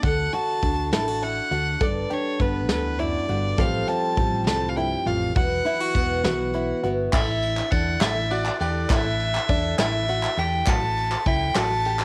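This excerpt of anthemic, nostalgic indie folk in a lilting 6/8 opens with six parts at once: a rich, nasal fiddle carries the melody up front with light vibrato, over a bright, full-bodied fingerpicked steel-string guitar and a shimmering, octave-doubled twelve-string set back in the mix. An open-back banjo adds plunky, twangy arpeggios, while a round, punchy hollow-body electric bass and a soft brush kit with dark cymbals and a medium-tuned snare hold the low end and pulse. At 7.1 s the arrangement builds: the steel-string guitar drops out, and a ringing, bell-like glockenspiel with brass mallets enters in the background alongside band-limited, vintage group handclaps. The fiddle, banjo and drums carry a worn cassette-tape colour, and the whole piece sits in a light reverb that gives it an intimate home-recorded feel.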